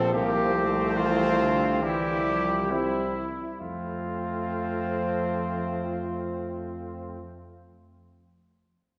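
Stately and triumphant, this brief classical brass quintet passage in F major moves at a rubato 65-72 BPM in 4/4, easing into a slowdown over the first 3.6 seconds as the harmony settles from C7sus4 through C to F. A dark cornet carries the melody up front, with a mellow trumpet on a softer second line, a soft-attacked trombone and smooth-topped French horn in the accompaniment, and a warm bass trombone anchoring the low end, all heard from further back in a wet, reverberant concert hall.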